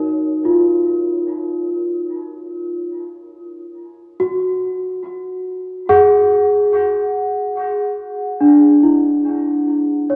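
A large celesta plays alone from the first moment, its bell-like, delicate tone sitting up front and ringing through a diffuse ambient delay. This is spacious, serene ambient music at 71 BPM in a straight 4/4, the celesta moving between D4 and F#5 over a harmony that opens on Ebm7 and turns to Dadd9 at 3.4 seconds. Medium felt hammers give the instrument a sweet, full voice with an airy quality. A wet concert hall reverb with a 2.2-second decay surrounds it, and the dark production keeps the top end soft and rounded. The passage runs 10.2 seconds and is cut from a longer piece.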